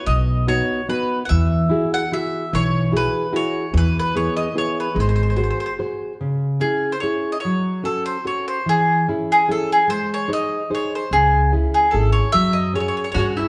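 In a straight 3/4 at 147 BPM, this wistful, passionate Italian folk serenade sets an up-front, woody, double-strung picked mandolin melody over a thumb-plucked classical nylon-string guitar, whose finger squeaks are audible, and a pizzicato steel-string upright bass, all sounding like a band playing live in one large studio with a wet reverb. The music moves from E major into C# harmonic minor at 6.2 seconds, while the bass falls silent for a stretch and returns at 11.1 seconds. A warm bowl-back mandolin adds a brief second line at 13.1 seconds, just before this fragment of a longer piece cuts off.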